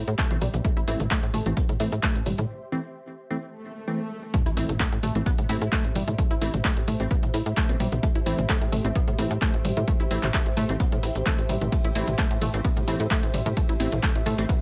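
A tight, detuned sawtooth riff with chorus, tube saturation and delay opens this relentless peak-time techno excerpt alongside a ring-modulated sequencer bass and an ethereal pad in the background, soon joined by an up-front punchy kick, an analog drum machine of handclaps, hi-hat, ride, shaker and toms, and crisp wave-folded chord stabs, with the riff, bass, pad, stabs and drum-machine parts pumping to the sidechain, until a break at 2.5 seconds, where a very quiet swell enters at 3.5 seconds and its impact lands on the drop at 4.3 seconds.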